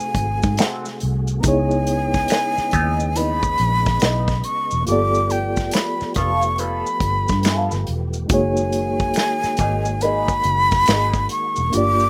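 R&B and neo-soul at a late-night, smooth 70 BPM with a swung sixteenth feel, this short excerpt sets a breathy, up-front jazz flute melody over reedy electric piano with fast tremolo and slapback echo, a lightly overdriven tonewheel organ with slow rotary speaker and key click in the background, a dark, foam-muted fingered bass, an acoustic drum kit played with bundle sticks, maracas with finger snaps, and a slightly broken-up, lo-fi electric guitar second line with wah and phaser entering at 0.6 seconds, all moving through G#7b9, C#m9, G9 and F#69 in a dry outdoor sound.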